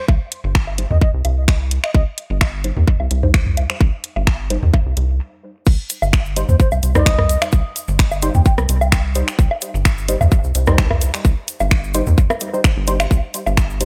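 Clinical and cool, this minimal techno piece at 129 BPM in C minor rides a lightly swung 16th-note feel, with an up-front overdriven electronic kick, a booming analog drum machine's rim clicks, toms and woodblock soaked in dub echo, and a garage drum kit's crash, finger snaps and hi-hat running from start to finish beneath a rubbery, hollow square bass that pumps against the sidechain. A muted, detuned sawtooth dub chord stab with chorus and analog delay evolves under a filter sweep until a stop at 5.2 seconds, and the drop at 5.7 seconds brings in a grainy cabasa in the background. Above it all, an airy, close-miked baroque flute with vibrato and analog delay plays expressive phrases in two short bursts, at 0.0 and 6.5 seconds, in a dry, echo-heavy mix.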